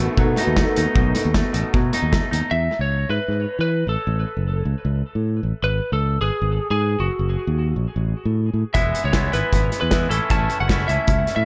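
Wistful and carefree, this indie rock excerpt at 154 BPM in E major opens with a lo-fi, chorused guitar through a small old amp and a scooped, overdriven guitar riffing over up-front fingered bass and a loose, punchy drum kit in a pumping small room, before a twangy, compressed lead guitar takes the melody from 2.5 seconds, with the drums and overdriven riff returning at 8.7 seconds, the guitars and drums soaked in tape echo.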